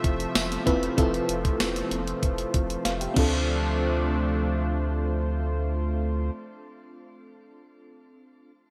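A dark, full-bodied FM electric piano with tremolo and a faint noise layer carries this dramatic, nostalgic fragment of 1980s-style pop, bathed in shimmer reverb; it plays a fill of its own and is the last part sounding, continuing alone until 8.5 seconds. Beneath it, a bold, detuned sawtooth pad holds sustained chords with chorus, vibrato and a filter swell, while mellow synth brass adds round, brassy stabs with a filter sweep, both stopping at 6.3 seconds. A deep, nasal analog bass with a fast attack sits up front alongside a clean 12-bit drum machine, whose thumpy kick, medium-tuned snare, hi-hat, tambourine and crash cymbal carry gated reverb and a tape-warm, small-room character. The drums close with a fill and drop out at 3.3 seconds, as the harmony moves from Fmaj7 to Dm7 over a straight 4/4 pulse. The bright digital production places the parts in a lush hall.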